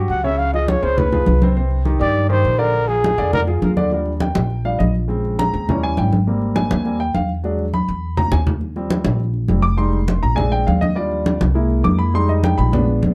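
The recording sounds dark and warm, set in a small room with a moderate, short reverb. This sunny, danceable Afro-Cuban jazz excerpt moves in a straight four, with a woody pizzicato upright bass up front and ringing, medium-tuned congas played with soft hands. A breathy trumpet opens with a whispered, intimate solo, its soft attack and vibrato touched by analog delay, before it drops out at 3.4 seconds. From 3.9 seconds the warm concert grand piano takes the solo, its long sustain, deep bass and audible action noise sitting near the listener. A brief drum fill arrives at 7.7 seconds, while lush extended harmonies such as Ebmaj9, Abmaj9 and Fm9 keep the mood bright.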